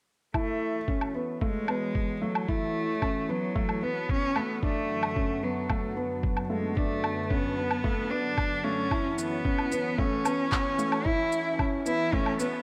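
A compressed, pitched-down kick thumps at 112 BPM in a straight 4/4, sitting up front with a muffled, tape-warm weight, while overdriven electronic woodblock, shaker and handclaps fill in the groove. This is piano and strings electronica in F# minor, moving and intimate, cut from a longer piece and built as a steady build-up from 0.3 s, with a filter sweep running across an analog synth pad. A dark, mellow concert grand plays a riff in its middle register, its action noise audible and a digital delay trailing behind it. Over this, a single bowed cello carries the melody with a rich, even tone and vibrato, also up front and touched with digital delay, entering at 0.4 s. Beneath them a lush, detuned unison pad holds sustained chords with a slow attack and long release, its chorus and sidechain pumping giving it a breathing, bright sheen as the harmony moves from F#m7 to Bm7/F# and back. A moderate scoring-stage reverb wraps the whole recording in a digital ambience.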